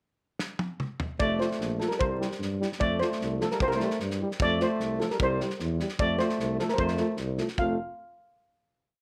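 A shimmering steel pan leads this short, festive and wild Balkan brass band piece, sitting up front with catchy hook phrases in 2/4. The loose acoustic drum kit opens with a fill in the pickup bar from 0.4 seconds, with a punchy kick, a medium-tuned snare and toms in a small-room sound. At 1.2 seconds the band enters: a mellow alto saxophone with vibrato plays a classical-style harmony line mostly in thirds beneath the pan, and a soft-attack tuba carries root-and-fifth bass on the main beats. From 1.4 seconds, in the background, a close-miked, dark euphonium with light vibrato and a warm, smooth-topped trombone each take one line of the group's offbeat chords. The harmony alternates between F and C throughout before the piece closes on a final chord at 7.6 seconds, all within light reverb.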